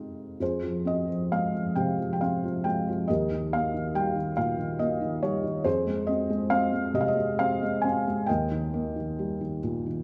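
Classical solo piano in a lyrical vein, this brief passage from a longer piece carries a wistful, dark mood. A felt-muted upright piano plays alone throughout the 10 seconds, its thick felt giving the tone a soft, mellow character, with the mechanical noise of the action clearly audible. The pulse moves in three with uneven beats and a free rubato feel, and the harmony alternates between F minor and E-flat chords. The instrument sits up front and intimate, spanning from the low register up into the treble. A moderate recital hall reverb surrounds it, lending a sense of space to the close, hushed sound.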